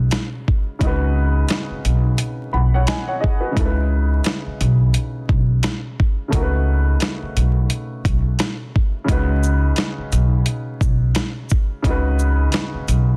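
Tough and reflective, this boom-bap hip-hop excerpt moves at 87 BPM in 4/4 with a swung sixteenth feel, cycling through G#m7, C#m9 and B7 before settling back on G#m7 at 9.1 seconds. A gritty, compressed sampler-style drum kit sits up front with a thumpy kick, medium-tuned snare, hi-hat and shaker, beside a woody, dark pizzicato upright bass on gut strings. A slightly detuned upright piano with short sustain, filtered at both ends, plays accompaniment from 0.0 to 13.2 seconds, all wrapped in studio reverb, vinyl crackle and a dense, heavily limited master.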